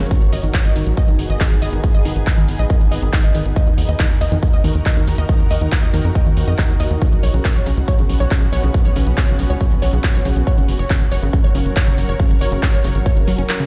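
Soaring and euphoric, this uplifting trance excerpt in Eb minor drives along at 139 BPM in a straight 4/4, with a punchy, up-front electronic kick pounding beneath a tight, dark sawtooth-and-square sequencer bass pumping to the sidechain and a big-room dance kit of handclaps and hi-hats, its hats pumping as well. Above them a lush, detuned unison pluck spins arpeggios through a dub echo, while a shimmering, ethereal pad holds sustained chords with an octave-up granular sheen, chorus and its own reverb. The chords move from Abm to Ebm, Bsus2 and Gb, the whole mix rings in a stone-room reverb as if played on a big sound system in a bare space, and a band accent lands at 13.5 seconds.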